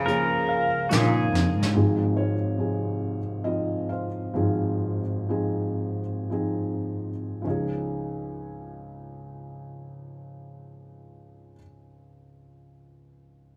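Acoustic folk-pop ballad in 3/4 and Db major, hopeful and nostalgic, between 50 and 72 BPM, cut from a longer piece, where strings floating very quiet, an earthy bowed cello, a pedal steel guitar's fingerpicked slide line, distant brushes on a fat snare and hi-hat with a fill at 1.3 s, and a slightly broken-up tremolo electric guitar on lo-fi arpeggios all drop away by about 2.1 s, leaving a felt-muted upright piano, mellow, boxy and up front with audible action noise, to carry the melody alone in a moderate stone room until 13.6 s, the tempo slowing until 7.5 s.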